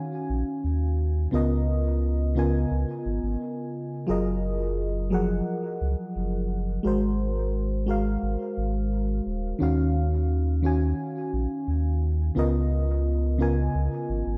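A mellow FM electric piano opens this relaxed sunset chillout excerpt at 87 BPM in Eb minor. Its soft, dark, full-bodied tone carries a noise layer, treated with chorus and tape echo, as it moves through Ebm9, Db13, Gbmaj13 and Ab9 chords. At 0.3 seconds a deep, round sine sub bass enters, sustained and up front beneath the keys, and both parts continue to the cut at 14.4 seconds, framed by light reverb and a digital ambience.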